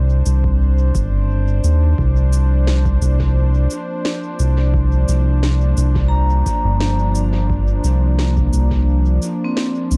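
A round, dark analog bass sits up front in this hazy, deep ambient dub excerpt, its detuned sawtooth, sine and triangle tones holding sustained notes with a fast attack. It moves at 87 BPM in a straight 4/4. A smooth, detuned analog pad fades in beneath it with soft-attack chorused chords, moving from Cmadd9 to Bb. Electronic drums sit back in the mix: a tape-warm shaker and woody snare are soaked in dub echo, while a deep electronic kick murmurs in the background until 8.8 seconds. At 6.1 seconds a vibraphone struck with hard mallets enters with metallic, ringing arpeggios, shaded by a slow motor vibrato and analog delay. The mix is dry of reverb and leans heavily on echo.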